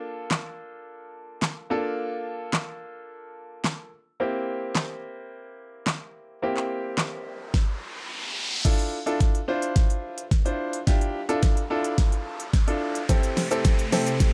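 A dry dance-pop excerpt in D minor at 108 BPM, driving and confident, is built on a clear, polished concert grand piano with deep bass and short sustain, its pumping chords moving through Bbmaj7, C7, Dmadd9 and Am7. An up-front, layered electronic drum kit brings a knocking kick, fat snare, crisp hats, handclaps, shaker and crash with a tape-warm edge, while an electronic riser enters at 7.2 s and a drum fill drives the build-up through the second half. Just before the cut, at 13.5 s, a dark, shimmering, granular pad with chorus and reverb slips in behind the mix.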